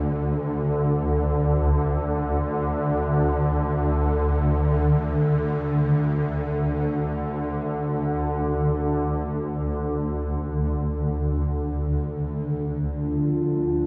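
In free time, this dark ambient drone in D minor sits in a dark, unsettling mood, opening with a swarming drone low in the register that warbles and evolves with a detuned, granular, vintage character and a slow, tense sustain. At 12.7 seconds a dark analog pad enters with sustained chords on D minor, its nasal, moody square and sawtooth tone thickened by chorus and a sub octave, both parts sitting up front until the cut at 13.9 seconds. The production is dark and enveloped in a huge, wet reverb with a long tail, as this fragment is taken from a longer piece.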